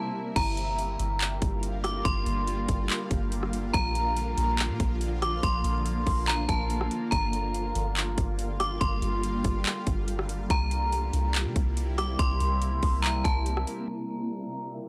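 A ringing, inharmonic FM bell carries a chorused, delayed melody high above a shimmering, granular ambient pad that pumps under sidechain and phaser, while a round, sine-like 808 bass and an up-front trap kit of hard-clipped kick, metallic hi-hats, handclaps, rim clicks and crash enter at 0.4 seconds in this hazy, spacious half-time cloud-rap piece at 142 BPM in G dorian, moving through Gm7, Bb and C7 on a dry, gritty recording until a filter sweep arrives at 13.9 seconds.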